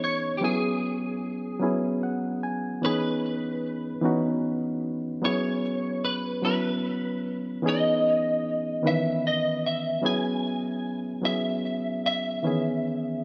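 A barky, reedy electric piano sounding through its built-in speakers sits up front with the chords, alternating E6/9 and C#m9, and plays a fill at 1.6 s, while a clean, picked, compressed electric guitar carries the melody through ensemble chorus and tape echo in this sensual, intimate R&B excerpt in E major, taken at a slow 50 BPM in 6/8 and soaked in a dreamy 2.7-second plate reverb.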